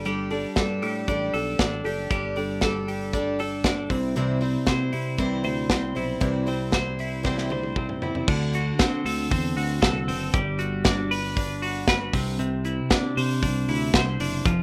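Jangly indie pop with a youthful, breezy mood, this short excerpt is built on a bright, twangy twelve-string electric guitar playing clean, compressed arpeggios up front. Beside it, a bright parlour steel-string acoustic with fresh strings picks its accompaniment until 8.3 seconds, while a round fingered electric bass and an up-front studio drum kit with a punchy kick and a medium-tuned snare drive the song. A drum fill from 7.3 to 8.3 seconds carries the music into a second section over D7, Gmaj7 and Cadd9, all set in moderate reverb with the rough feel of a home demo.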